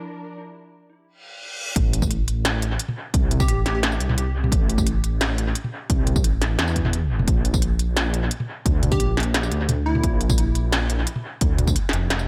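A dark, detuned saw bass anchors this heavy, tense half-time drum and bass excerpt at 174 BPM in A phrygian, its deep, rumbling, beating tone saturated and sitting up front from the drop at 1.8 seconds. A brief electronic reverse cymbal rises into that drop, where a heavy electronic kick and an industrial kit arrive together, both tape-tinged and re-recorded in a large room. The kit brings a clanging snare, crisp hats, tambourine and toms, each low-pass filtered and thrown into dub echo, and it sits forward in the mix. The harmony moves from Bb to A minor at the drop and returns to Bb at 7.3 seconds. A punchy, catchy square-wave lead built from detuned unison voices, with a noise layer, a filter sweep, a moving notch and vibrato, flickers in briefly and then returns around 8.9 seconds, its short phrases trailed by analog delay. The whole mix is steeped in echo-heavy digital ambience.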